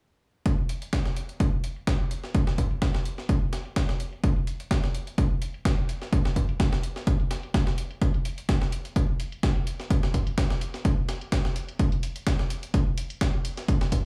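An up-front, punchy electronic kick drum drives this energetic, soulful piano house excerpt at 127 BPM in 4/4, with a light 54% swing on the sixteenths. Around it, a gritty, compressed, pitched-up breakbeat sampler-style kit supplies hi-hat and a medium-tuned snare, both high-pass filtered, while a softer analog electronic hi-hat sits in the background behind a low-pass filter. The kick and background hat carry a tape-warm tone, re-recorded in a small room, and a digital small-room reverb rounds out the space across the whole 0.5 to 14.0 second span.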